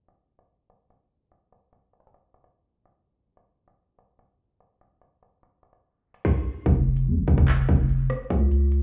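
The recording has a digital, muffled sound, as if heard through a wall into a club, with reverb and a low-pass filter sweep running from the start until 6.7 seconds. This cold, tense drill track sits in a half-time feel and is cut from a longer piece. An electronic drum kit sits up front throughout, with a hard-clipped kick, woody snare, crisp hi-hats, handclaps and rim clicks. At 6.7 seconds the second section begins as a growling 808-style bass enters, up front and spanning F1 to F2. Its buzzy, sine-based tone has a fast attack and a decaying tail, adding low end to the final seconds.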